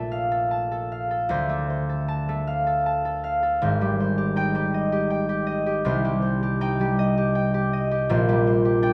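A solo concert harp, fingerpicked and ringing up front, carries this graceful, dreamy classical fragment in 3/4 at 80 BPM, its beats uneven and pulled by rubato. Spanning Ab1 to D6 in Bb major, it drifts through Bbmaj7, Dm7, Abmaj7 and Cm before settling on Bb69 at 8.1 seconds. The warm acoustic tone blooms in a moderate recital hall reverb, and the piece is cut from a longer work.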